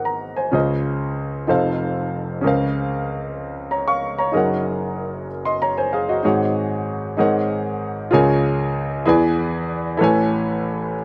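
In a slow, straight 6/8 pulse counted in dotted quarters, this short gospel piece unfolds with a reverent, soulful mood. A clear concert grand piano plays entirely solo, ranging from deep bass notes down at F1 up to a high Db6. The tone is natural and up front, with a short sustain, and the dry outdoor setting adds little reverb and leaves the piano sounding close. The harmony is rich with extended gospel colours, moving from Ab7 into Dbmaj9, F7 and Bbm9/Db before settling on Gb69 and a suspended Ab9sus4. At 8.1 seconds the passage shifts to a new section, turning from Db6 through E7 to an Amaj9 as this fragment of a longer piece breaks off at 11.0 seconds.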